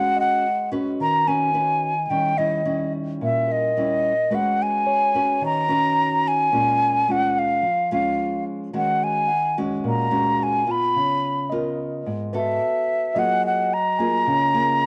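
A hollow, airy silver concert flute carries the melody up front, its tongued notes shaded with vibrato as it moves between Eb5 and Cb6. This is an intimate, melancholic bossa nova in Eb minor at 108 BPM in a straight 4/4, tuned slightly sharp to A4 = 441 Hz. Beside it, a small-sounding, fingerpicked nylon-string guitar sits equally close, giving acoustic accompaniment across the whole 14.9 seconds. A mellow tine electric piano joins at 0.2 s, clean and warm through its built-in speakers, tucked well into the background. The harmony drifts through Abm7, Eb7b9, Abm11, Bbm7, Ebm11 and Db13 before a B7sus4 at 12.6 s settles onto Gbmaj9. Every part carries the soft wear of cassette tape, and a moderate spring reverb with small room ambience lends this home recording, a fragment of a longer piece, a close, private feel.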